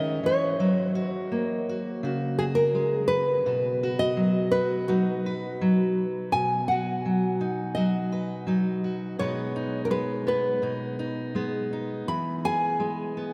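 Hopeful and nostalgic, this short folk piece cut from a longer work pairs a full-bodied, deep classical nylon-string guitar carrying the melody with a fingerpicked steel-string dreadnought supplying accompaniment, both sitting up front. The nylon-string guitar takes a solo over the first 6.3 seconds before the music moves into a new section, with the harmony passing through C#m, F# and B and later reaching G#m/B and E. A wet cathedral reverb places the pair in a vast, echoing space, lending the plucked strings a long, ringing afterglow.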